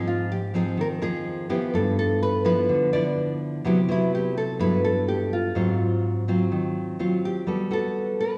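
A straight 4/4 bossa nova pulse at 125 BPM drives this sunny, sophisticated excerpt, in which a small, up-front fingerpicked nylon-string guitar carries the melody over a second fingerpicked nylon-string guitar of deep classical tone, complete with finger squeak, that moves through Ab6, G6, Cmaj7#11 and Gmaj9, the pair ringing in the wet reverb of a church or concert hall.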